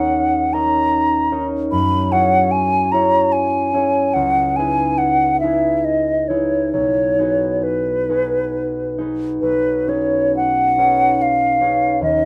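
A moderate studio ambience surrounds this short passage, cut from a longer piece, with both instruments placed up front. It is an impressionist classical duo for flute and harp in triple metre, played with a free, rubato feel that gives it a luminous, dreamy mood. The concert flute carries the melody throughout, its close-miked tone hollow and airy, shaded with vibrato and a crisp attack. Beneath it the concert harp provides accompaniment, thumb-plucked and ringing, with a warm acoustic body that reaches down into its low register. Colourful harmonies such as D#m7, F#sus2 and C#m9 drift past before the music moves into a new section at 9.4 s, settling on a B69 chord until the passage breaks off at 12.3 s.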